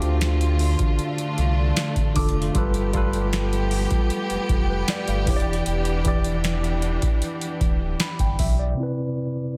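A worn, slightly out-of-tune tine electric piano opens this dreamy, smooth contemporary R&B excerpt at 77 BPM together with lush, bowed strings pumping under sidechain, a deep sub bass with octave and a booming analog drum machine with crisp snare and metallic hats, moving through Dm7, G9, Em7 and Cmaj7, while a glassy synth bell with chorus and digital delay glints in the background at 2.2 and 8.0 seconds, and the piano carries on alone until 9.6 seconds in a dry, dense, heavily limited, low-pass-filtered mix.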